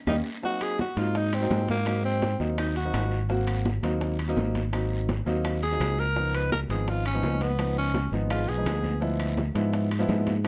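A dark production with light reverb frames this lively, sophisticated Afro-Cuban jazz excerpt, which opens on a drum fill and band accent before a bright, gritty, growling tenor saxophone carries the up-front melody in two phrases and a breathy, whispered trombone, heard briefly at the very start, slips back in quietly behind it near 8.3 seconds, all over a warm grand piano, a punchy, growly fingered electric bass, ringing high-tuned congas, metal-shell timbales, woody distant claves, round low-tuned bongos and a faint, raspy guiro.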